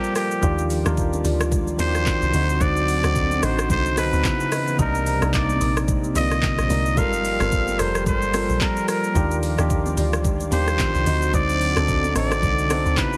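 A straight-muted trumpet sings a nasal, raspy jazz melody with vibrato, scooped notes and a trail of delay, sitting up front over a bell-like electric piano, a faint, detuned warbling pad and a smooth R&B kit with a knocking kick and metallic hats. This deep, soulful amapiano groove moves at 110 BPM with a light 16th-note swing. A round, dark log drum bass and soft background marimba stabs with delay join at 0.4 and 0.2 seconds, alongside thin, high-tuned congas, over Ebmaj9, D7b9, C#m9, Cm9 and Gm9 chords, all pressed into a heavily compressed radio-like sound.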